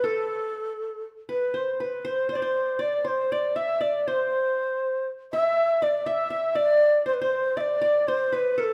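A breathy, reedy low ney carries the longing melody up front with vibrato and tongued notes, while a quieter fingerpicked qanun with triple strings and a bright edge adds a second line, both sounding throughout this hypnotic 8.7-second Arabic fragment in straight 4/4, bathed in the wet reverb of a recital hall.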